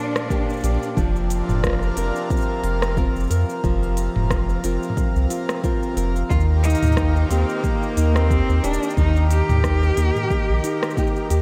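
Folktronica with a hopeful, playful mood, moving at 90 BPM in 4/4 with a light swing on the sixteenths, cut from a longer piece. A fingerpicked nylon-string guitar plays classical-style arpeggios with fresh strings and audible finger squeak, bathed in a diffuse ambient delay, while a reedy, full accordion holds sustained chords throughout. A clear, focused bowed cello with vibrato sounds briefly at the start, then returns at 6.3 seconds to carry the melody through its own diffuse ambient delay. An electronic drum kit with crisp hats, rim click, shaker and toms joins alongside a deep electronic kick, both tape-warm and re-recorded in a large room, and a round, sine-based sub bass enters at 0.6 seconds and sits up front with a mellow, sustained tone. The harmony moves from Bb6 to Fsus4 and settles on Eb as the cello comes back, all within a light reverb and digital ambience.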